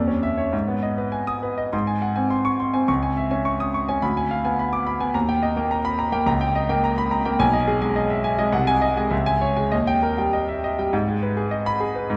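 In a rubato 2/4 at 97-108 BPM, this stormy, passionate excerpt of a virtuoso classical piano study in G# minor features a solo concert grand, up front with deep bass and a smooth, vintage tone spanning B1 to D#6, bathed in a wet concert-hall reverb as its harmony presses from G#m through Ddim7 and D#7 before returning home to G#m at 10.9 seconds.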